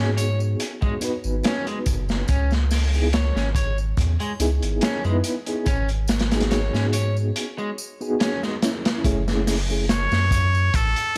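The muted trumpet stands out most: it arrives up front at 9.9 s with a brilliant, nasal tone and vibrato, carrying the melody over the final stretch of this dark, cinematic trip hop cut. Before it, a mellow reed electric piano supplies the accompaniment through its built-in speakers, treated with fast tremolo and tape echo. A slightly broken-up, twangy electric guitar picks arpeggios with its own tape echo until 8.5 s. A deep, round sub bass sits up front beneath a crunchy, saturated breakbeat kit with a tight kick and a rolled-off top, while tambourine and triangle stay close and dry in the background. At 71 BPM in 4/4 with a light swing, the harmony moves from G#m7 to F#m7 at 9.0 s, after a break. The whole recording has little reverb and a dry, gritty hardware sound with transformer saturation and vinyl crackle.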